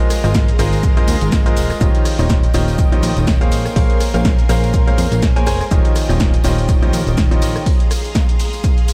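This short excerpt of joyful, feel-good piano house has a bright, punchy sound with light reverb, moving at 123 BPM in 4/4 with a gentle swing on the sixteenths in Eb mixolydian. A brilliant, woody upright piano carries the riff with analog delay and sidechain pumping, stopping at 7.6 seconds, while a shimmering vintage string machine of sawtooth violins holds soft-attack chords in the background through an ensemble chorus that also pumps. Underneath, a plucky analog bass that is funky, saturated and wave-folded, with a filter pluck and a fast attack, pumps along too. The up-front electronic kick anchors a punchy analog drum machine with hi-hat, rim click, shaker and snare, joined by a very quiet, gritty breakbeat sampler-style kit with a high-tuned snare and a very quiet tambourine part of egg shaker and group handclaps in a small room. The chords move from Ab69 to Eb13, Bbm9 and Eb13 before returning to Ab69 at 7.7 seconds.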